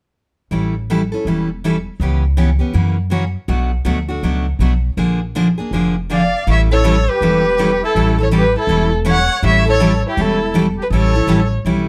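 Acoustic string swing in the jazz manouche style, this charming, playful excerpt moves at 162 BPM in 4/4 with a lilting swing feel, centred on A mixolydian. A bright, picked steel-string acoustic guitar and a woody, thumpy pizzicato upright bass on gut strings sit up front from 0.5 seconds, carrying the accompaniment through a chord sequence that begins on A7 and passes through F#7 and Bb7 before returning to A7. At 6.1 seconds a single bowed violin takes the melody, close and expressive, its tone marked by vibrato, soft attacks and gliding portamento. Alongside it, a reedy musette accordion adds a shimmering, vintage second line, sitting lower in the mix with a band-limited character. Light reverb gives the small ensemble a touch of space, and the fragment is cut from a longer piece.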